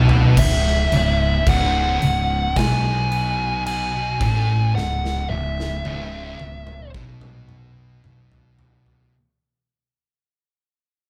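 Stoner and doom metal in C# minor, crawling at 55 BPM in a straight 4/4, with a sludgy, brooding mood over a single C# minor chord. Two thick fuzz guitars grind out the riff low in the background, their distorted tone warm, while a fingered electric bass sits up front, growly and bright with overdrive and tube saturation. A big rock drum kit in a big room drives the piece with a punchy kick, medium-tuned snare, toms and bright crashes, opening with a short fill and rolling into another from 4.8 seconds onward. A dark, distorted fuzz lead guitar carries the melody up front in a high register from 0.4 to 6.9 seconds. The band sounds like it is playing live in one room with a moderate large studio reverb, and this excerpt, cut from a longer piece, fades out from 0.4 seconds to its end at 9.1 seconds.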